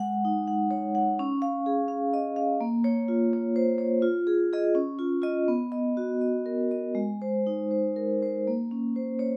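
Set in a lilting 6/8 that bends freely under rubato, this brief contemporary classical piece for solo vibraphone moves with a flowing, hypnotic pull. Soft mallets draw a mellow, ringing tone from the bars, and a medium motor vibrato gives each sustained note a gentle shimmer. The instrument sits up front, caught by close, detailed microphones with a light touch of reverb that leaves an airy halo around the metallic sound. The harmony drifts through colored chords, opening on Ab7sus4 and passing through Dbadd9, Bbmadd9 and Fm7 before a striking turn to Bmaj7 at 5.5 seconds, then settling on Abadd9 and returning to Bbmadd9 at 8.5 seconds. The vibraphone plays alone across the whole 9.4-second span, which is cut from a longer work.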